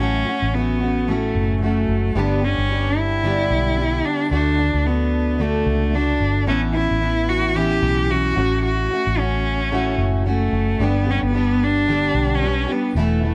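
Acoustic pop with a carefree, sunny lilt and a swung sixteenth feel, this excerpt sets a rich, smooth bowed cello melody with vibrato, bathed in plate reverb and digital delay, over a full-bodied, double-tracked fingerpicked jumbo acoustic guitar and a dark, round, foam-muted vintage electric bass that sits punchy and up front, all moving through a chord cycle of F#m/A, G, D and Aadd9 in a light reverb.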